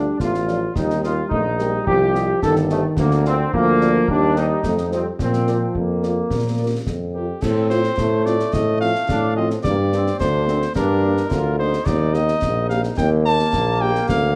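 In a straight 2/4 at 108 BPM, this rousing, proud military-style march for wind band in Bb major sets a warm solo cornet with light vibrato up front over a clear tuba bass and distant, roomy trombone chords, while a mellow, close-miked euphonium plays a second line until 7.1 seconds, a very quiet French horn section adds punchy, smooth-topped accompaniment, and concert snare, bass drum and dark clash cymbals round out the ensemble, all within a dark, warm, moderately reverberant large-studio sound in this fragment of a longer piece.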